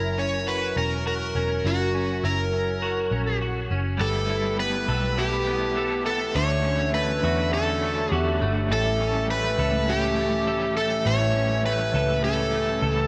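Bathed in a moderate scoring-stage reverb, this floating, dreamy dream pop passage moves at 102 BPM in a straight 4/4 over F#7, G69, Dmaj9 and A7 chords. Up front, an overdriven slide guitar played with fingerpicks carries the melody through digital delay, while a clean, twangy electric guitar picks arpeggios through ensemble chorus and delay, a distant, soft-attack French horn section holds mellow chords, and a dark, round, foam-muted picked bass anchors the low end. From 4.0 s a raw, double-tracked garage guitar joins in the background with overdrive, tremolo and subtle chorus.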